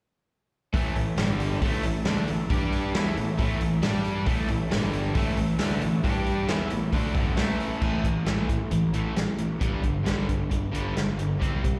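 A straight, driving 4/4 beat at 135 BPM opens this confident classic rock cut in A major, the vintage drum kit sitting up front with a punchy kick, a medium-tuned snare, hi-hat and dark crash cymbals under a rolled-off top. Beneath it, a fuzzy, overdriven picked bass pushes hard from G1 to G2, warm and punchy up front in the mix. Two guitars carry the riff together: a bright distorted electric guitar and a cranked stack guitar with overdrive tucked further back, both coloured by slapback echo. A tonewheel organ holds very quiet, full sustained chords through a slow rotary speaker with vibrato, dropping out at 7.8 seconds as the harmony shifts from the back-and-forth of A and G5 to an A5 and G5 passage. The whole band sounds like a live gig heard through the venue's PA, with a light recital-hall reverb, and the snippet is cut from a longer piece, ending at 11.8 seconds.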